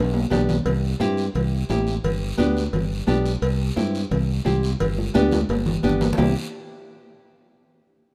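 A straight four-beat cumbia groove drives this joyful, sunny fragment of a longer piece, with ringing metal-shell timbales and cowbell opening on a drum fill and returning with another at 5.2 seconds, high-tuned congas sitting saturated in the background, a faint raspy guiro, a bright, up-front fingered electric bass, and a woody, fingerpicked nylon-string guitar with old strings picking between G and C under light reverb.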